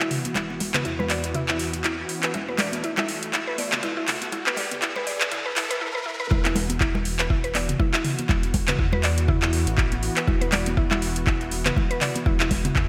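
Afro house at 121 BPM in 4/4 with a swung sixteenth feel, this hypnotic cut from a longer piece moves through a build-up over its first 6.3 seconds before a drop takes over to the end. A smooth, warbling analog pad holds sustained chords on E5 throughout, its vintage sampler grit and chorus breathing with sidechain pumping, while a woody, mallet-like synth pluck spins arpeggios through delay as a filter sweeps across it during the build. The overdriven afro-pop kit sits up front with handclaps, metallic hats and toms in gated reverb, joined at 0.4 seconds by a deep, overdriven electronic kick and a round, mellow analog bass that pumps beneath it. High-tuned, damped congas with a thin skin patter close and dry in the background, and a background riser climbs from 1.5 seconds all the way to the drop, carrying on through a brief break just before it. The bright 1980s-style digital production wraps the mix in a lush hall reverb.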